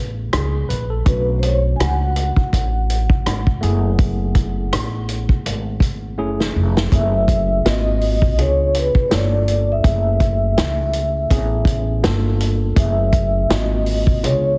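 A dark, ringing vibraphone played with soft mallets carries the melody from 1.1 seconds, its motor vibrato and slapback echo floating over a smoky, cool jazz-hop groove at 82 BPM in F# minor with a swung 16th feel. Beneath it, a worn, slightly out-of-tune tine electric piano with light overdrive sits low in the mix on minor ninth and eleventh chords. A woody pizzicato upright bass and an up-front vintage kit with tight kick, medium-tuned snare, rim clicks and hi-hat hold the groove, marked by a drum fill from 6.2 to 6.9 seconds, all of it heavily compressed into a radio-like sound with small room ambience.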